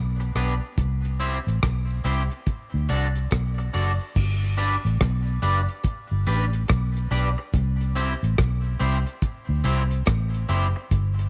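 A vintage muted electric bass opens this uplifting roots reggae excerpt at 0.0 s, sitting up front with a dark, round, foam-muted tone that stays low in the register. From 0.2 s a deep, dry acoustic drum kit joins with a tight kick, hi-hat, rim click and crash cymbal, its smooth, rolled-off top keeping it dusky and close. An electric guitar at the edge of break-up adds picked, twangy accompaniment with a slightly gritty bite, coloured by subtle chorus and dub echo. A cabasa rustles quietly in the background, heard as though in a small room. At a relaxed 71 BPM in 4/4 with a swung sixteenth feel, the music moves through G, C and D in G major before a new section begins at 4.2 s and returns to G and C, all within a snug, close-sounding room.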